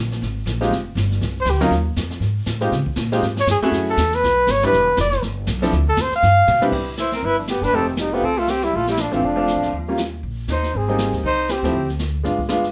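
Small-group swing and bop jazz with a sophisticated, relaxed mood, cut from a longer piece and moving at a brisk swung pace. A mellow, punchy trumpet carries the melody from 1.4 seconds, its scooped notes and smooth top delivered with forceful jazz phrasing up front in the mix, taking a solo through the opening stretch. A woody, growly upright bass played pizzicato anchors the harmony from the start, while a clear baby grand piano with short sustain comps beside it. A brush kit with dark cymbals, a medium-tuned snare and a boomy kick keeps time, dropping a fill at 6.5 seconds just before a bright tenor saxophone enters at 7.0 seconds with vibrato and a soft attack to add a second line. The group sits further back in a wet studio room, the chords drifting through shades such as F#m9, Cmaj7 and Abmaj7 before the harmony falls away near the close.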